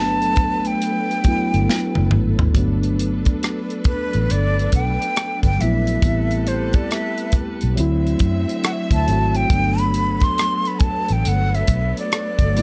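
A slow neo-soul and R&B groove at 69 BPM in 4/4, swung at 64% on the sixteenths, sets a sensual, soulful mood in G major in this cut from a longer piece. A tight funk drum kit, dry, airy and polished, enters just after the start with hi-hat, tight kick, medium-tuned snare, rim click and toms, and plays a fill from 1.7 to 2.5 seconds, while a dark, round, foam-muted vintage electric bass sits up front beside it. A mellow, clean tine electric piano supplies the accompaniment, and a lush bowed string section holds smooth, even sustained chords lower in the mix. The breathy jazz flute carries the melody with a soft attack, vibrato, lifted highs and a slightly unsteady tone, doubled by a slapback echo, and from 2.5 seconds it takes a solo over harmony that moves from Gmaj9 through Am9 and D9 back to Gmaj9. A light reverb frames the recording.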